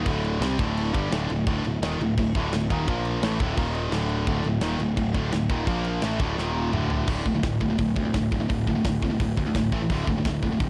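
Relentless and dark, this heavy metal excerpt charges at 171 BPM in a straight 4/4, with an up-front high-gain guitar riffing over a second distorted guitar set in the background and a growly, fuzz-laden picked bass, all moving through power chords on D with brief turns to Bb, Eb and A. A tight acoustic kit with bright cymbals, medium-tuned snare and tight kick drives the riff, then a drum fill from 6.4 to 7.1 seconds launches a new section. The production is dark and warm, with light reverb.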